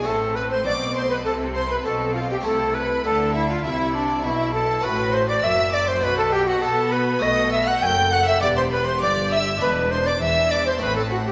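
An airy, up-front tenor recorder with a chiff carries the melody in this driving, dramatic baroque-style concerto movement at 100 BPM in 4/4, cut from a longer piece, beginning in A minor and turning to E minor at 4.8 s. A close, intimate violin section, played sul tasto with light vibrato, also carries the melody in a register above it, while a smoother second violin section supplies a background line. Distant violas, an expressive cello section, a focused double bass section and a bright, plucked Italian-style harpsichord fill out the accompaniment and bass, all bathed in the wet reverb of a scoring stage.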